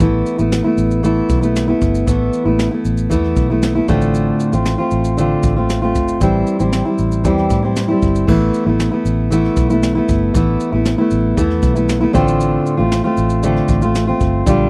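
Reflective and wistful, this excerpt of acoustic pop in A minor moves at 116 BPM in a straight 4/4, with a full-bodied, up-front fingerpicked steel-string acoustic guitar carrying the accompaniment over Asus2, Dm7/A and Am7 chords, a round, foam-muted vintage electric bass, and a jazz brush kit with a boomy kick, high-tuned snare, shaker and dark crash cymbal, all captured in a dry, close 1970s-style small-room studio sound.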